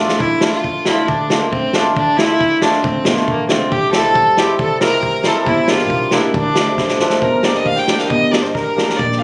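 A nasal, gut-string violin sings the melody up front in this bittersweet yet festive klezmer piece, over shimmering hammered dulcimer, a woody pizzicato upright bass and a gritty vintage drum kit that opens with a fill, while a sweet, reedy accordion with light tremolo tuning joins in the background at 3.7 seconds, all in a small room as if captured on a phone.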